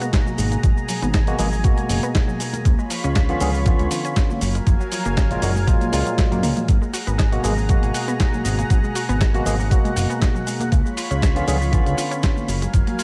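A knocking, tape-warm electronic kick drum sits up front in this sensual, cosmic nu-disco excerpt, joined by a gritty, compressed sampler-style kit of hi-hat, shaker and snare, bright congas in the distance, a fat sawtooth analog bass with a filter sweep, a barky tine electric piano through a combo amp with digital delay, a lush, warbling chorused pad, and a punchy, ring-modulated unison pluck playing delayed arpeggios in the background, the pad and pluck both sidechain-pumped, all cycling through G#m9, C#7b9 and F#maj9 in a dry mix.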